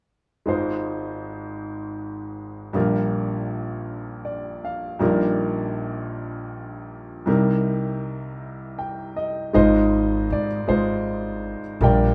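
This acoustic folk-pop ballad moves at a slow 53 BPM in a straight 6/8, and its mood is hopeful and tender. An upright piano carries the melody from 0.5 seconds, with a boxy, intimate tone placed up front and its action noise clearly audible, spanning a broad range from Ab1 up to G5. It adds short fills at the close of its opening phrases, and the harmony drifts through Ab6, Bb6, Ebmaj7/Bb and Cm7 before returning to Ab6 as a new section begins. At 9.6 seconds a pizzicato upright bass with steel strings joins, its woody low line sitting between Ab1 and Ab2. A moderate studio reverb gives the pair a modest sense of space, keeping the feel close and warm. The piece is a brief fragment of a longer work and ends at 12.1 seconds.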